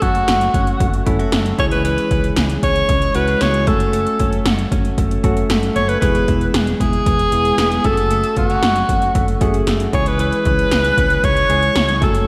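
Bright, 1980s-style digital production bathes this short fragment of a longer piece in a lush hall reverb with a 1.8-second tail, giving it an uplifting, romantic glow. It is a straight-feel pop groove in 4/4 at 115 BPM, tuned to A4 = 439 Hz, moving from F#m to C#m, back to F#m, then through E and F#m before settling on C#m across its 12.3 seconds. Up front, a clear alto saxophone carries the melody in a pop solo style with vibrato, its line sitting between F#4 and C#5 and trailed by a digital delay. Beneath it, a bell-like tine electric piano plays clean, direct accompaniment with a subtle chorus, while a picked, compressed electric guitar, recorded direct and tucked into the background, repeats a riff through lush chorus and delay. A woody fretless bass, amped and growly with a hollow-body character, holds the low end from E1 to C#2. Electronic pad drums, re-recorded in a large room and placed up front, drive the track with a punchy kick, gated snare and metallic hi-hats.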